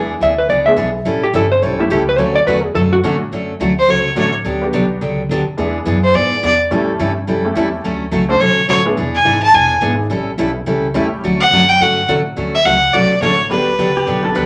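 A wet club reverb gives this short western swing passage the air of a small room, with the fiddle and guitars sitting up front. It opens on a dark, clean hollow-body electric jazz guitar taking a brief solo. Behind it play a bright, full-bodied dreadnought acoustic guitar, a jangly, detuned vintage honky-tonk upright piano, and a woody, growly pizzicato upright bass. At 3.8 seconds a clear, nasal fiddle takes the melody, bowed by a single player with light vibrato, an earthy tone and a smooth top, while the country accompaniment keeps a playful, swinging feel through a run of seventh chords. At 14.0 seconds, just before the cut, an electric pedal steel guitar slips in with compressed, fingerpicked slide notes and volume swells.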